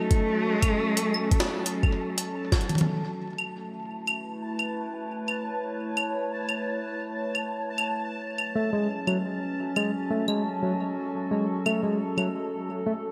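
Playful and wistful, this 87 BPM IDM piece in A major opens with a distant, bowed cello line on A3, sung with vibrato and portamento and trailed by delay, which ends at 2.1 seconds. Beneath it sits a warbling, lo-fi tape-like pad holding sustained chords through chorus and its own reverb, nostalgic and mellow, while a bubbling, resonant texture of random filter steps hovers high on A5. From the start, a thumpy, pitched-up electronic kick drives the groove together with a gritty, overdriven jungle-style sampler kit of claves, hi-hat, toms and a high-tuned snare with gated reverb. After a drum fill at 2.5 seconds, the kick drops away by 2.7 seconds while the kit carries on. The harmony moves from A to F#madd9 around 8.4 seconds, and shortly after, a barky tine electric piano, overdriven through a combo amp, adds delayed arpeggios between F#3 and A3. A moderate plate reverb and bright 1980s-style digital production give this cut from a longer piece its glossy sheen.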